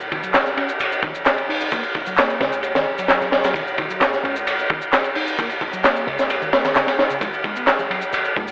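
An energetic, swaggering breakbeat excerpt at 131 BPM opens with electronic shaker and handclaps over a deep, boomy 808-style bass sitting low in the background. A crunchy breakbeat drum kit arrives almost at once and dominates the mix, its tight kick, high-tuned snare, hi-hat and dark ride cymbal carrying a gritty, saturated edge with a rolled-off top. Beneath it, a picked electric bass plays a round, foam-muted riff with tube saturation and dub echo, staying back in the mix. The harmony rests on D#m7 until the chords drop out at 7.2 seconds, and ringing congas played with soft hands slip in at 7.8 seconds. Light reverb and small room ambience frame the whole, while vinyl crackle and a telephone-like filtering give it a lo-fi character.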